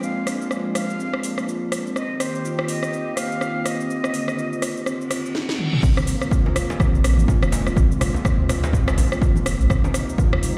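Driving and earthy, this afro house excerpt moves at 124 BPM in 4/4 with a swung sixteenth feel, opening on a breathy, close-miked concert flute melody with vibrato and tape echo over a detuned sawtooth pad with chorus, 12-bit grit and sidechain pumping, woody rosewood marimba arpeggios that also pump, and an overdriven house kit of cracking snare, metallic hats, rim clicks, shaker, toms and crash, all moving between Bb7 and Cm7. A reverse cymbal and drum fill lead to the drop at 5.8 seconds, where a round sine sub bass with sidechain pumping and a punchy, up-front overdriven kick arrive, while low-tuned congas and a deep djembe sit in the background. The whole mix is bathed in a large, bare-room studio reverb, as if played over a big sound system.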